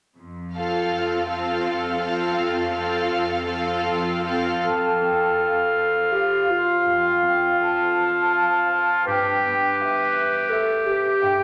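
Cinematic, emotional film score for orchestra in F lydian, hopeful and uplifting, moving at a rubato 82 BPM in 3/4 with uneven beats, cut from a longer piece and set in the wet reverb of a scoring stage. It opens on an F chord with a distant bowed cello section holding F2, joined at 0.6 s by an intense, up-front violin line with light vibrato and a vibrato-rich viola section, all three string sections sounding clear and symphonic. At 4.6 s the strings give way to a ringing, fingerpicked concert harp playing arpeggios and a close-miked solo clarinet, followed at 4.7 s by a classical-style solo oboe and a pure, hollow flute section, with the harmony shifting to Em/G at 9.1 s.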